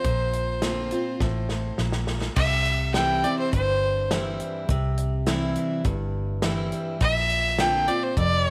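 A clear, airy-bowed fiddle with light vibrato takes an intense solo from 2.4 s in this nostalgic, down-home honky-tonk and classic country excerpt at 103 BPM in C mixolydian, backed by a full-bodied picked dreadnought acoustic guitar, a dark, round, foam-muted vintage electric bass and a natural studio drum kit with bright cymbals and a punchy kick that plays a fill from 1.2 s, all set in a small room with light reverb as the chords move from Bbsus2 to C and on to Bbadd9.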